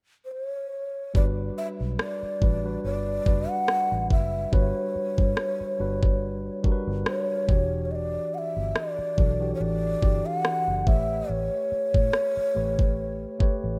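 A rough home-demo mix with light reverb opens this moody, late-night contemporary R&B excerpt at 71 BPM, where a breathy, hollow shakuhachi plays the melody alone from 0.2 seconds before a clean tine electric piano, a produced drum kit with an up-front knocking kick and rim click, and a dark, round, foam-muted fingered bass enter at about 1.1 seconds over lightly swung sixteenths and chords moving from Gmaj7 to Em9 and A9.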